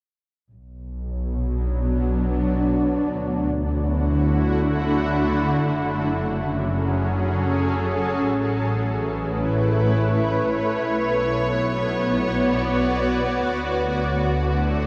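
Serene and melancholic, this ambient fragment drifts at 70 BPM in 3/4 in B dorian, cut from a longer piece, with a bowed double bass section entering at 0.5 seconds to hold the low end with lush vibrato and expressive portamento. At 1.3 seconds a bright, ethereal pad arrives up front, its detuned, granular shimmer with an octave-up sheen and chorus carrying sustained chords through Bm, D, F#m7, Amaj9 and Dmaj7. The whole recording sits in a huge, wet reverb with an 8.8-second tail and the worn, warbling pitch drift of old cassette tape.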